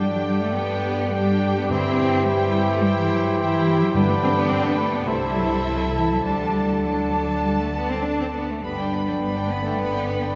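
Cheerful and graceful, this quick classical-period orchestral movement in G major moves at 100-108 BPM in 4/4 with a rubato feel, its rich, lush violin section carrying the melody over a warm, up-front cello section and a dark double bass section. Second lines come from a dark cor anglais, a mellow clarinet, an airy, hollow large flute ensemble and a very quiet violin section with portamento, while a bassoon, a smooth viola section and soft-attack French horns holding sustained chords sit in the background. Timpani enter at 1.7 s and stop at 4.7 s, and the whole ensemble sounds through a wet church reverb that keeps the top end soft.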